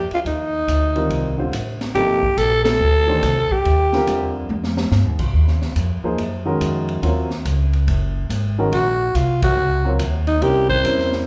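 A swung 4/4 at 142 BPM drives this searching, intense slice of modal jazz in C dorian, cut from a longer piece, with the upright bass playing pizzicato, woody and up front from the start, an open jazz drum kit with dark cymbals, a high-tuned snare and a boomy kick, and a grand piano entering at 1.0 seconds with an intimate sound, audible action noise and short sustain. Up front and close-miked, a growling alto saxophone carries the raspy, gritty melody with light vibrato, drops out at 4.4 seconds as a drum fill follows, and returns at 8.7 seconds. The band hits accents at 2.6 and 9.4 seconds as the harmony moves from Cm9 to Ebm9 and lands on C7b9, all heard from further back in a large studio with moderate reverb.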